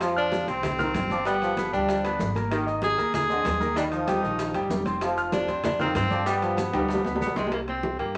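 Fiery and driving, this salsa excerpt moves at 192 BPM in a straight 4/4 and is cut from a longer piece. An up-front tenor saxophone carries the solo melody from 0.2 seconds, its punchy tone smooth on top. Beneath it, a trombone section with light vibrato and a vintage edge plays a second line until 7.1 seconds. A concert grand piano accompanies with an intimate, polished sound, deep bass, long sustain and audible action noise, over a woody, dark upright bass played pizzicato on gut strings. Behind them sit ringing, medium-tuned congas, round, low-tuned bongos struck with hard hands and given a compressed, saturated treatment, metal-shell timbales, and grainy, mellow maracas that drop out at 7.5 seconds. A drum fill closes the section as the harmony moves from Fsus2 through G, Abadd9 and Eb toward C5, and the mix carries a wet studio reverb.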